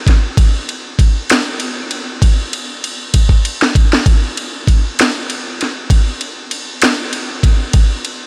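A rolling 12/8 pulse at 65 BPM, counted in dotted quarters, drives this short blues fragment cut from a longer piece, and the feel is rollicking and gritty. A garage drum kit carries the whole passage from 0.1 to 8.2 seconds, built from kick drum, ride cymbal and snare drum. Its sound is electronic, layered and produced, with a knocking kick and a cracking snare placed up front in the mix. A drum fill breaks the groove between 3.1 and 4.0 seconds before the beat settles back in. Light reverb lends the room a touch of space while keeping the kit close.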